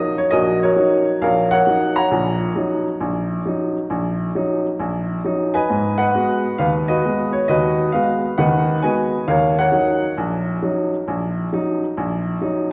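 A swung eighth-note feel at 134 BPM in 4/4 drives this solo jazz passage, cut from a longer piece and lasting about 12.7 seconds. A baby grand piano carries everything alone, ranging from Bb1 up to Bb5 in Eb minor, with its tuning set slightly high at A4 = 441 Hz. The instrument sounds clear and open, placed up front, with notes that ring on in a long sustain. The harmony moves from Ebm7 to Abm7 at 5.7 seconds and returns to Ebm7 at 9.3 seconds, giving the passage a swinging, late-night mood. A generous concert-hall reverb with a 2.2-second decay surrounds the piano, lending it the spacious air of a church or concert hall.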